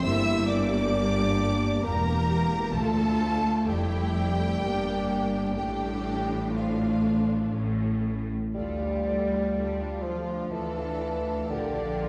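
In a rubato 3/4 at 58-68 BPM, this yearning, elegiac slow romantic movement for symphony orchestra in D minor sets a lush, vibrato-rich violin section melody over a smooth second violin line, focused violas and an intense, clear cello section, with a distant double bass section grounding the low end. A mellow French horn section holds sustained chords until 7.5 s, moving through Gm, Dm and Dm/A to A. At 8.5 s a solo bassoon enters up front as the harmony settles on Dm and then Bb, all heard from further back in a wet scoring-stage reverb in a passage cut from a longer piece.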